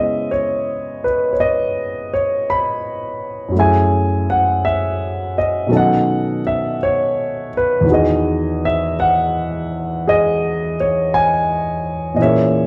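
A dark, intimate production places a concert grand piano up front in a moderate large-studio reverb, its deep bass, long sustain and audible action noise all clearly present. This slow jazz ballad, cut from a longer piece, has the solo piano swinging gently in 4/4 through a wistful progression from C#m7 to a closing Emaj9. The piano plays alone across the whole 12.7 seconds with a natural, warm tone.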